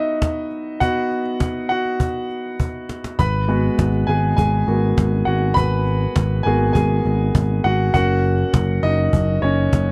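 Piano-driven pop with a hopeful feel, this short cut opens on a clear, intimate grand piano with audible action noise and long sustain, joined almost at once by a snappy cajon with snares that plays a fill from 2.6 to 3.2 seconds before a bright, growly picked electric bass enters at 3.2 seconds, all up front in a dry, close 1970s-style studio sound with light reverb as the harmony moves from B to G#m7 and on to F#.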